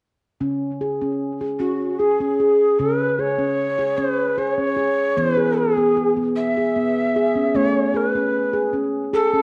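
A home cassette recording with a dull, rolled-off top end sits in a wet spring reverb, framing this hypnotic, meditative world piece, cut from a longer work, at 76 BPM in 3/4 and C# minor. Up front, a ringing nitrided-steel handpan plays soft fingertip arpeggios through tape echo from 0.4 seconds. At 1.6 seconds a breathy, woody Native American-style cedar flute joins with a tongued melody, its chiff and unsteady vibrato adding a fragile, human edge as the harmony moves through E and A.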